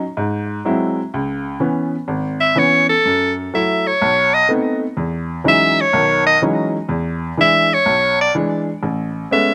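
A clear, woody, intimate upright piano opens this smoky, late-night jazz excerpt in C# minor, swinging at 125 BPM with its action noise audible up close. At 2.4 seconds an edgy soprano saxophone takes the lead with a punchy, forceful solo full of vibrato, sitting up front over chords that move from C#m7 through F#m7 and B7b9 to Emaj13 and Amaj9. The sound is dry, captured outdoors.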